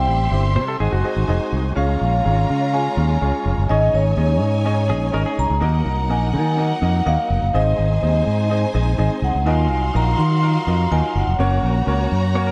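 An up-front, amped fingered electric bass drives this joyful, danceable soul excerpt in Db major at 125 BPM, under a mellow, ringing vibraphone melody with slapback echo and a lush, distant violin section second line, while a bright, woody, slightly detuned upright piano with audible action noise supplies accompaniment, a thick, lightly overdriven tonewheel organ holds sustained chords through a slow rotary speaker in the background, and a clean, compressed semi-hollow guitar riff drops in briefly at 0.6 and 4.9 seconds and once more at the very end, all set in light reverb.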